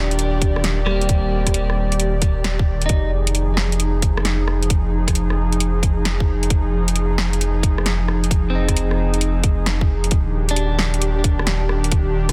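Future garage at 133 BPM in F dorian, this short, melancholic cut from a longer piece has a rainy feel, with a 66% swing on the sixteenths giving the groove its shuffle. An airy, breathy pad holds sustained chords throughout, its detuned, chorused tone softened by a slow attack and long release, while a round sine sub bass sits up front beneath it, deep and mellow. A garage kit of cracking snare, rim clicks and warm hats comes in at 0.1 seconds, and a tight electronic kick follows at 0.4 seconds, both re-recorded in a small room for a produced, layered character. A bright, clean picked electric guitar adds compressed accompaniment with delay in two brief passages, the second beginning at 8.5 seconds, and it shares the sidechain pumping of the pad and bass. The harmony moves from Ebmaj7 to Fm7 and back, and the dry, dense, heavily limited master keeps the sound close and full.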